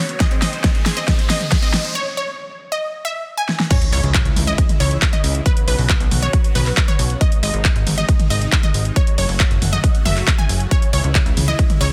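A punchy, overdriven electronic kick drum sits up front in this soaring, driving uplifting trance excerpt, moving at 137 BPM in 4/4 in C# minor. A big-room dance drum kit, also overdriven, adds a huge snare, handclaps, hi-hat, crash cymbal and toms. The opening build-up carries drum fills, a riser and a short, warm analog pluck arpeggio with chorus and tape echo, then breaks off at 2.0 seconds. The drop lands at 3.7 seconds with an impact. Here a funky, plucky analog bass with a filter pluck enters and pumps under the chords C#m, Bsus2, G# and F#m. Over this, a bright, detuned unison pluck carries the melody through tape echo and sidechain pumping, while a lush supersaw pad with phaser holds sustained chords in the background of a dry mix.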